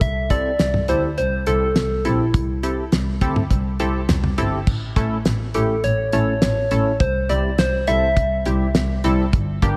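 A straight 4/4 pulse at 103 BPM drives this nocturnal synth-pop excerpt, where a damped 70s drum kit with a fat snare, tight kick and gated reverb sits up front beside a clear, bowed double bass with vibrato, while a round, warbling FM lead with chorus and tape echo sings until 9.0 s over a punchy, funky sawtooth polysynth comp with a filter sweep that enters at 0.3 s, moving from C6 through A to C in a small room with light reverb.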